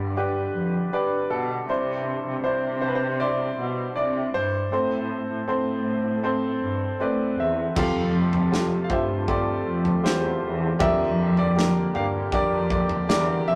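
In a straight 4/4 feel, this heartbroken, longing pop ballad excerpt opens with a polished concert grand piano carrying the melody over a woody, slightly detuned upright piano with audible action noise, while a muted, veiled cello section bowed with vibrato holds the bass through chords moving from G to Cadd9 and Amadd9. At 7.8 seconds the music shifts to Fadd9 and Bb6 as a very quiet, shimmering chorused pulse-width pad and an acoustic drum kit with a punchy kick, snare, toms and crash cymbal enter. The sound is a rough rehearsal-room recording with tube saturation, set in a wet studio reverb.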